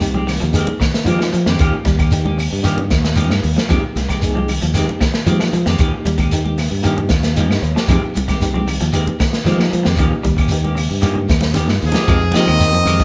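A straight 4/4 afrobeat groove at 114 BPM in F minor, driven by a gritty, saturated breakbeat kit with a tight kick and rolled-off top, a punchy fingered bass, a grainy shekere, very quiet congas and woody claves, circles hypnotically between Fm9 and Eb9. Over it, a dark clean guitar picks arpeggios, a hollow-body guitar adds spring-reverbed stabs, and a reedy, worn electric piano with fast tremolo sits in the background, playing a fill at 6.8 seconds before a drum fill at 11.0 seconds. At 11.8 seconds a raspy, growling bass trombone and a warm trombone enter, joined by a brilliant, forceful trumpet melody at 11.9 seconds, lifting the intensity just as this excerpt, cut from a longer live-room performance, ends.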